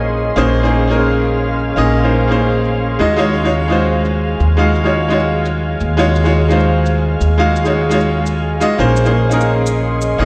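Up front, a bright, brilliant grand piano carries the accompaniment with dub echo, moving from Bbm11 to Ebm11 at 3.0 seconds and back at 8.8 seconds in this lush, melancholic liquid drum and bass fragment at 171 BPM with a light swing. Beneath it, a glassy, ethereal FM pad holds slow-blooming, warbling chords with ensemble chorus and vintage 12-bit grit, while a woody pizzicato upright bass sits close and prominent. A quiet, overdriven electronic shaker with low-pass filtering adds texture, and the whole mix blooms in a lush hall reverb and the echo of a bare stone room.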